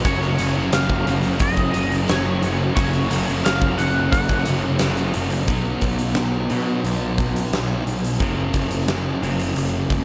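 Hazy and wistful, this 88 BPM shoegaze and dream pop excerpt in F# major sets a huge arena drum kit, up front with a fat snare, punchy kick and pumping room sound, over an overdriven fuzz bass and background riffs from a crunchy overdriven guitar with reverse reverb, a dark fuzz guitar with subtle chorus, and a very quiet, bright, double-tracked distorted guitar, while a twangy clean guitar with phaser and analog delay and a close, jingly tambourine drop out shortly after 5 seconds as the chords move from F# to B and return to F# at 8.2 seconds.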